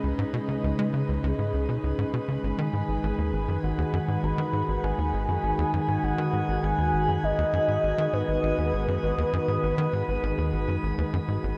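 Bathed in a long, shimmering reverb and a cassette-tape haze, this hypnotic, expansive fragment of sequencer-driven ambient space music sets a tight, punchy sawtooth sequencer bass riff with delay beneath a thick, warbling, detuned unison pad holding sustained chords through chorus, until at 2.4 seconds a soft, round octave-layered synth lead with sub-octave weight, chorus, tremolo, vibrato and delay enters to carry the melody.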